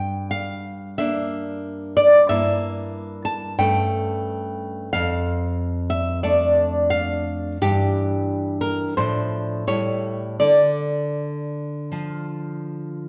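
Passionate and wistful, this romantic piece for solo classical guitar moves in D minor with a rubato feel, its tempo drifting between 78 and 95 BPM in 4/4. A single nylon-string guitar carries everything across the 13.1 seconds, fingerpicked up front with a warm, fresh-stringed tone and an occasional finger squeak. Its range stretches from F2 up to A5, giving the line both a deep bass and a singing top. The harmony opens on Gm, passes through diminished and dominant colors over a held G, settles briefly on Dm/F and Gm6, then resolves through Dm/A and A7 to Dm at 10.4 seconds. A wet recital hall reverb surrounds the guitar, lending each phrase a lingering bloom in this short cut from a longer piece.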